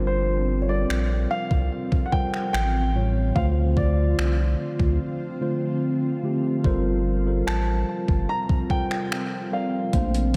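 A slow, straight 73 BPM pulse in 4/4 arrives at 0.9 s from a gated, overdriven 80s drum machine with a thumpy kick, hi-hat and finger snaps, over a round, deep analog bass that sits up front in this sensual, longing contemporary R&B excerpt in G minor. A mellow tine electric piano accompanies through Gm11, A7b13 and Dm7, while an ethereal, detuned pad with chorus, phaser and a slow attack hovers behind. An intimate grand piano with audible action noise carries the delayed melody high above, and the mix, soaked in lush hall reverb, stays dreamy throughout, with a break from 5.0 to 6.6 s.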